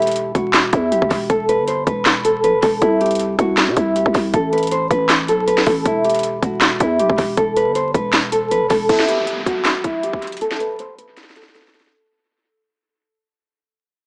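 Vinyl crackle and a small-speaker sound frame an echo-heavy, lightly reverberant mix in this eerie, menacing trap excerpt in E minor at 158 BPM with a half-time feel. An up-front, thumb-plucked nylon-string guitar carries the melody through a low-pass filter and analog delay, over a growling, buzzy 808-style bass and a produced electronic kit of hard-clipped kick, sharp snare, metallic hats, claps and crash. At 8.9 seconds the bass drops out and an electronic downlifter enters as the guitar is swept by a filter and the piece fades, closing on a drum fill at 11.2 seconds.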